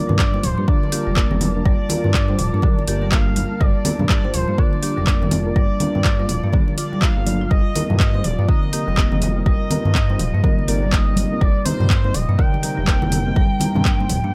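Afro house at 123 BPM in G minor, this short excerpt moves with an earthy, swung groove over two chords, Gm7 giving way to Cm7 at 7.5 seconds. An overdriven, up-front electronic kick anchors the track alongside a deep house drum kit of handclaps, metallic hi-hats and toms, while ringing, softly played congas sit in the background. A smooth, saturated synth bass pumps against the kick, and a buzzing, woody marimba with medium hard mallets plays dry arpeggios further back, carried by digital delay. Dark, detuned chord stabs with chorus, phaser and a filter sweep punctuate the mix, and a very quiet, ethereal pad holds sustained chords beneath. On top, an expressive, nasal synth lead sings the melody with vibrato, lush chorus and digital delay, all in a close, dry room.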